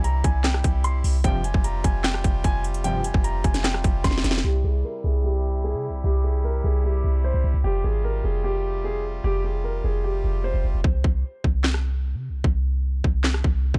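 Hip hop in a trap style, this brooding, eerie excerpt runs at 150 BPM with a half-time feel in F harmonic minor, moving between C and Fsus2 chords. A dark, mellow grand piano carries the melody with audible action noise, softened by a low-pass filter and trailed by digital delay, while a reedy single-reed accordion holds sustained chords beneath it through a similar filter. A deep, boomy 808-style bass with a clean sine tone, a fast attack and a decaying tail sits up front for the whole passage, running until 13.8 seconds. The overdriven trap drum kit, with its hard-clipped kick, sharp snare, metallic hats, handclaps and rim clicks, plays through a drum fill at 4.0 seconds, drops out while a filter sweep colors the middle stretch, and returns at 10.8 seconds with the hi-hats muted. Fat, nasal analog synth brass stabs with chorus, vibrato and digital delay appear briefly near the start, and the whole piece is wrapped in a dark digital ambience.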